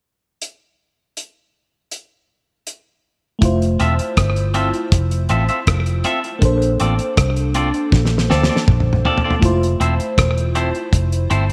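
This lovers rock reggae excerpt opens with a damped 70s drum kit playing alone, its fat snare, tight kick, rim clicks, hi-hat and toms sitting dry and up front with a slapback echo. At 3.4 seconds the vintage muted fingered electric bass enters, round, dark and punchy, alongside an FM electric piano with a soft pad layer that sounds lush and dreamy through chorus, phaser and slapback echo. A twangy electric guitar follows just after with bright, clean, compressed stabs carrying spring reverb. The tempo is an unhurried 80 BPM in straight 4/4, in F major, moving from Fmaj7 to Bbmaj9 and back to Fmaj7. A drum fill leads into the closing section at 9.4 seconds, and the romantic, tender mood is held together by a light studio reverb.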